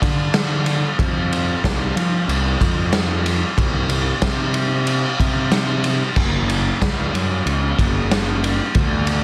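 The sound is dry and close, with a dense, heavily limited modern master that keeps both instruments pressed up front. This short cut from a longer quiet-loud alternative rock track moves at 93 BPM in a straight 4/4, and its mood is dark and cathartic. A picked electric bass, run direct and amped through overdrive, growls with a bright fuzz edge across a range from F#1 to F3 for the full 9.2 seconds. Beside it, a raw garage drum kit plays throughout, heard in a bright stone room yet smooth and rolled off at the top. The kit features a punchy kick, a medium-tuned snare, and crash and ride cymbals. The pairing of gritty bass against the dark, acoustic drums gives the whole passage a heavy, brooding weight.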